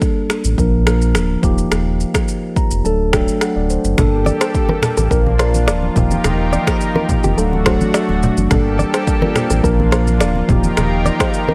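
A dry, gritty recording carries this sultry, mellow afrobeats excerpt, opening with an up-front, clean tine electric piano through phaser, an overdriven deep house drum kit of deep kick, finger snaps, rim click and shaker, and a full sine sub bass that enters at 0.4 seconds. The electric piano plays a fill from 2.3 seconds. At 4.0 seconds a lush, detuned unison pad with chorus and soft-handed, low-tuned congas join, followed shortly by a bright, picked electric guitar riff with tape echo sitting in the background.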